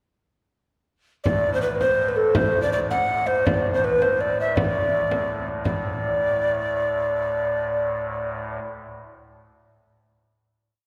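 Festive and ancient in mood, this short medieval dance moves at 110 BPM in a straight 6/8, tuned to A4 = 435 Hz. A breathy, mellow alto recorder carries an ornamented modal melody with vibrato and a crisp, chiffy attack from 1.2 seconds, over a soft reed organ drone set low between D2 and A2, voiced with an oboe stop and tremulant. A deep, close and dry frame drum keeps an evenly spread pattern until 5.8 seconds, and the piece settles on a final chord from 5.7 seconds, with a wet concert hall reverb that places the listener further back in the room.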